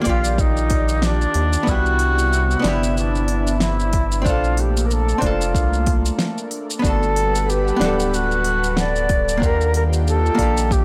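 Blissful and smooth, this short excerpt of sunset chillout moves at 93 BPM in 4/4 with a swung sixteenth-note feel, drifting through lush major-ninth chords from Ebmaj9 to Cmaj9, Bbmaj9, Gmaj9 and back to Ebmaj9. A mellow jazz flute carries the melody up front, its tongued, expressive phrasing and vibrato softened by vintage 12-bit sampler grit and tape echo that give it a distant, airy character. Beneath it, a clean, hollow-body archtop guitar provides compressed, picked accompaniment, while an airy pad with a noise layer and slow attack sustains the chords through chorus and phaser. A round, dark analog bass with tube saturation sits prominently in the low end, joined by a deep, tape-warm electronic kick. A smooth R&B drum kit adds a fat snare, silky hi-hats and shaker, and the whole mix carries the dry, gritty texture of a hardware recording with digital ambience.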